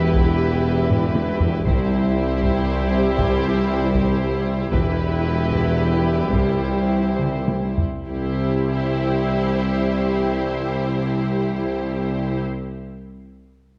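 Heard through worn, warbling old cassette tape with a warbly pitch drift, this cinematic orchestral film-score cue sits in a moderate scoring-stage reverb and is cut from a longer piece. It moves in a heroic, majestic 6/8 at 66-79 BPM in C major, alternating between E minor and C chords and slowing down from 3.9 to 8.1 seconds. Lush, bowed violins carry the melody from a distance with smooth vibrato, a second, more focused violin line sits beneath them, and violas fill in the accompaniment. Very quiet mellow French horns and tight, vintage-toned trombones hold sustained chords. Cellos and double basses form a deep bass foundation in the background, joined by a very quiet, warm tuba. A taiko ensemble played with heavy sticks drives the rhythm, adding fills around 0.9 and 7.2 seconds before dropping out at 8.1 seconds, leaving the orchestra to carry the final bars.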